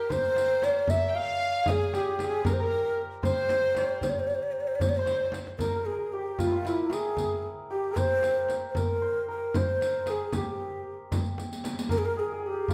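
Persian modal ensemble music in 6/8 at 76 BPM, set in C dastgah homayun, with a warm, festive mood in this short excerpt cut from a longer piece. A breathy, hollow ney carries the melody up front with vibrato and a crisp attack, while a shimmering, ringing santur plays a second line and a bowed chamber violin section, intimate and played sul tasto with light vibrato, plays alongside it until 5.3 seconds. Frame drum, a tight and dry tombak and a distant riq with bright jingles keep the pulse throughout, with drum fills at 5.1 and 11.4 seconds, as the band plays live in one room bathed in wet, large studio reverb.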